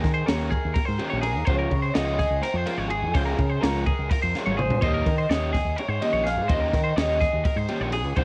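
A dry, lo-fi home cassette recording captures a restless, wistful snippet of math rock and midwest emo at 251 BPM in 7/8, where a slightly broken-up lead guitar through a small old amp carries a phased melody over bright, twangy, compressed twelve-string arpeggios fed through analog delay, a double-tracked crunchy overdriven riff, a growling fingered bass with overdrive sitting up front, and a compact cocktail kit with a punchy kick, high-tuned snare and dark cymbals, while the harmony moves from Eb7sus4 to Dbmaj7 and the kit drops a drum fill at 4.5 seconds just before it returns to Eb7sus4.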